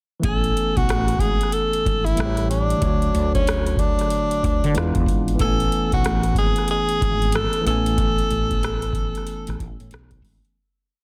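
A dense, heavily limited modern master wrapped in digital ambience carries this short, warm and soulful neo-soul R&B piece, set over a swung, slow sixteenth-note groove from a booming analog drum machine with a deep kick, metallic hats and rim clicks, re-recorded in a large room. A woody, growly fretless bass lays down a laid-back line while a barky tine electric piano, bright and clean through a combo amp, holds drop2 chords decorated with grace notes. Up front, a breathy tenor saxophone plays a jazz-style solo melody of motif-based call phrases with subtone, vibrato and scooped notes, finishing at 9.9 seconds as the whole track fades out from 8.0 seconds.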